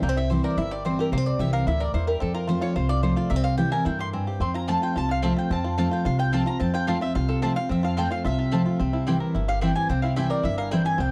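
Bluegrass in a lively, joyful mood with a straight 4/4 drive, cut from a longer piece. A picked mandolin with double strings carries the woody melody, its tone touched by tape echo. Up front, a jumbo steel-string acoustic guitar with fresh strings supplies full-bodied picked accompaniment, while a bright, twangy banjo played with fingerpicks rolls percussive arpeggios, also tinged with tape echo. An upright bass with gut strings adds a thumpy, pizzicato foundation, and from 4.7 s to 10.8 s a second, mellow mandolin slips in with stabs through the same echo. The harmony moves between C and F, and the whole track sits in a dark, warm production with a light reverb.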